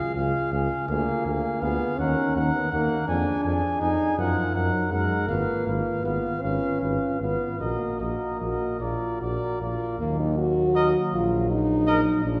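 This is a grave, solemn classical brass quintet passage, cut from a longer piece, moving slowly at 50-56 BPM in a rubato 6/8 in Eb minor, tuned to A4 = 435 Hz. A clear trumpet carries the melody high in its range with light vibrato, while a mellow flugelhorn sings a second line beneath it, sounding distant and roomy. A punchy, present French horn fills the accompaniment with light vibrato. A bass trombone enters at 0.2 seconds to anchor the low end up front, and a smooth-topped trombone joins the accompaniment at 0.9 seconds. The harmony moves through chords such as Db, Bb7/D, Ebm and Ddim/F before settling on Bb and returning to Ebm at 10.0 seconds, where a new section begins. A reverberant concert hall places the ensemble further back in the room, lending the playing a spacious, ceremonial weight.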